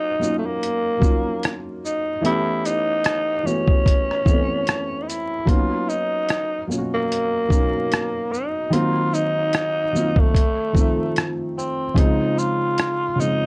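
A growling, breathy tenor saxophone carries the melody up front with scooped notes and vibrato, over a soft, filtered felt-muted upright piano with audible action noise and a muffled, pitched-down sampler-style kit of thumpy kick, rim click, hi-hat and shaker, in a hazy, nostalgic lo-fi hip hop excerpt at 74 BPM with swung 16ths, vinyl crackle and small-room reverb, its chords moving from Ebm7 to a rootless Bbm11.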